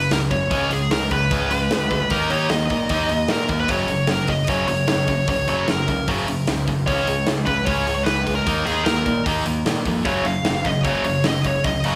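A dark, high-gain lead guitar with digital delay carries the melody up front in this rowdy, upbeat punk rock excerpt at 151 BPM in F# major, over a bright, tight distorted rhythm guitar riff, a growling overdriven electric bass and a big rock drum kit with a punchy kick and medium-tuned snare in a roomy sound, while a second tight distorted guitar joins in the background at 10.1 seconds.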